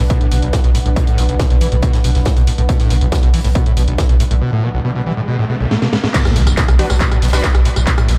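A squelchy, screaming distorted acid riff with lush chorus and pumping sidechain drives this industrial, hypnotic peak-time techno excerpt in B minor at 139 BPM. It sits over a thick saturated sub bass, an up-front distorted electronic kick, a techno kit with cracking snare, claps, rim clicks, tambourine and crash, a fat-snared acoustic rock kit in the background, and a blurred granular cloud pad. The pad drops out at 4.4 s into a break where a riser and drum fill lead to the drop at 6.1 s. The drop is marked by an impact, with a bright, detuned rave stab following at 6.8 s.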